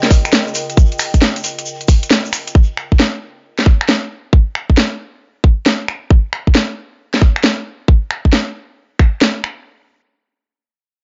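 This soulful, bouncy two-step garage excerpt opens with a swung garage drum kit, a tube shaker and a warbling, nostalgic pad sounding together over a Db chord. The pad has a lo-fi, vintage character, built from detuned square and triangle tones with a sub octave. It has a slow attack, chorus, its own reverb and sidechain pumping, and it fades out by 2.6 seconds, leaving the harmony unstated. The grainy, saturated shaker sits in the background with dub echo and stops at about 2.5 seconds. An up-front electronic kick, tight and layered, drives the groove until 9.1 seconds, alongside the kit's cracking snare, finger snaps and warm hi-hats, which run until 9.6 seconds. The mix is dry on reverb but heavy with echo, and its muffled top end gives it a hazy, small-room feel.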